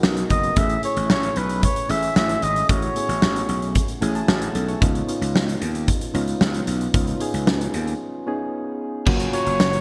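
A warm, vibrato-tinged flugelhorn sings up front from 0.3 to 3.7 seconds and returns at 9.3 seconds over a punchy big-room rock kit with gated reverb, growly overdriven slap bass and round, chorused electric-piano-like synth keys that fill at 3.8 seconds, as this nostalgic, romantic 1980s-style pop excerpt at 113 BPM moves through G#m7, Amaj7 and C#9 to a break before a compressed, double-tracked overdriven guitar slips in at 9.1 seconds on F#maj7, all with a bright digital sheen and plate reverb.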